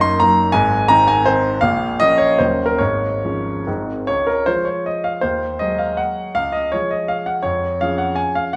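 A solo grand piano sits up front in a wet recital hall, its intimate, natural tone carrying long sustain and audible action noise. This short passage from a longer romantic classical piece is a triple-time dance in dotted rhythms, played with rubato across a range from Eb1 to C6 and carrying a proud, graceful mood. The opening phrase moves through minor colourings before settling at 4.1 seconds into a second phrase that rests on the home chord and its dominant seventh.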